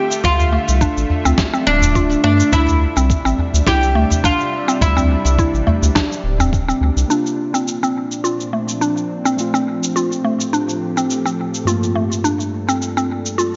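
A gently swung sixteenth-note groove in 4/4 drives this mystical, meditative organic downtempo piece, cut from a longer work. Gritty, compressed sampler-style drums re-recorded in a large room carry the beat: a thumpy kick, a medium-tuned snare and an electronic cabasa, joined by a small, dry udu tucked in the background. A round, deep analog bass with a nasal edge sits up front and pumps with sidechain compression, while a tense, string-like bowed drone holds sustained chords with vibrato, built-in reverb and its own sidechain pumping. A woody, warbling FM mallet pluck spins mellow arpeggios through chorus and digital delay, and a bright, fretless, plectrum-plucked oud with double strings states a short melody with delay until 5.9 seconds. At 7.1 seconds the harmony shifts, the kick, bass and udu have already dropped away, and muted, intimate felt-like synth keys enter with chorus, ring modulation and delay, while a filter sweep colors the pluck. 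The mix has light reverb and a soft top end.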